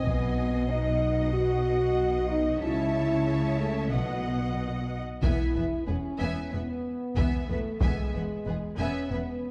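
A dark, warm production in a moderate scoring-stage reverb carries this brief cut from a cinematic, epic orchestral film score at 93 BPM in 4/4, heroic and brooding, where lush vibrato violins sing a focused melody over a second violin line, clear, intense violas accompany, a mellow, vintage French horn section holds sustained chords up front, a smooth cello section sits in the background while an expressive double bass section stands up front, and a band-limited taiko ensemble struck with heavy sticks booms from 0.1 to 1.3 seconds and again from 5.2 seconds as the harmony moves from B to E.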